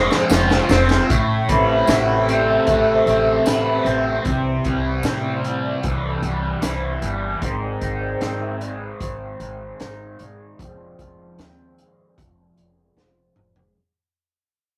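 A double-tracked fuzz guitar sits up front in this dark, hypnotic psychedelic rock excerpt, playing a bright, picked riff coloured by distortion, phaser and a low-pass filter. A crunchy breakbeat kit opens with a fill, its high-tuned snare, tight kick and gritty, rolled-off top giving the straight 4/4 feel a saturated bite. At 1.1 seconds a reedy, breathing harmonium takes a solo over boxy sustained chords, while a filter sweep runs through the passage as it fades out. Underneath, a woody, thumpy pizzicato upright bass holds the low end as the chords move from Fm through Amadd9, C and G# and back to Fm. A jingly tambourine stays close but in the background until 6.8 seconds, and the drums play another fill near the end. The rough rehearsal-room recording carries tube saturation and light reverb.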